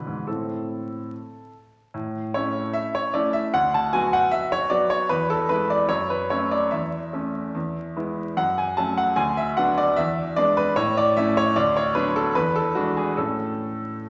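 In a flexible, rubato 2/4 at roughly 70-78 BPM, this playful, elegant classical-period sonatina fragment in A major features a clear, natural-sounding baby grand piano up front as the sole voice, opening on an A minor chord before brightening to A major at 1.9 seconds, all set in a wet recital hall reverb with vinyl crackle.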